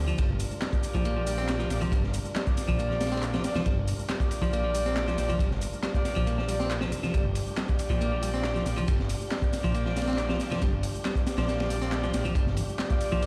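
A swaggering, raw breakbeat cut from a longer piece, it rides a straight 138 BPM in 4/4 and sits on a single Gm7 chord in G minor throughout its 13.3 seconds. Up front, a crunchy breakbeat kit with a punchy kick, high-tuned snare and dark ride cymbal sounds gritty and saturated, its top rolled off as if in a small room, while a dry, overdriven analog drum machine adds handclaps, hi-hat and shaker. Beside the kit, a fat, detuned analog bass with a sawtooth edge, wave-folded tone and filter sweep holds the low end, and congas and bongos ring in the background from 0.3 seconds. A bright, picked, compressed clean electric guitar plays a riff through tape echo, and a horn section with light vibrato and a smooth top punches in stabs from 0.7 seconds, also carrying tape echo. Beneath it all, a full tonewheel organ holds sustained chords with key click, fast rotary speaker, chorus vibrato, 12-bit sampler grit and sidechain pumping, the whole mix carrying the stone reverb of a big sound system in a bare room.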